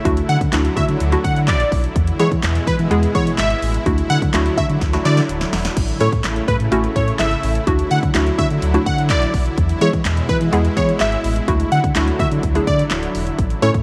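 A bright, catchy unison lead carries the melody in this upbeat, summery dance-pop excerpt, its detuned sawtooth tone given movement by phaser, vibrato and tape echo as it sits in a high register from 0.3 seconds. Beneath it, a hollow, bouncy square-wave pluck with a warbling, vintage chorus character supplies the accompaniment, while a deep, full sub bass with an added octave anchors the low end. A lush supersaw pad holds sustained chords that move between D add9, E and A, and the pad, pluck and bass all pump with sidechain compression for a breathing, dance-floor feel. The house drum kit sits up front with a punchy kick and snare, layered with handclaps, hi-hat and crash cymbal in a straight 4/4 groove, and a drum fill at 4.8 seconds leads into the second pass of the drop at 5.8 seconds. Light reverb and digital ambience give the polished production a touch of space.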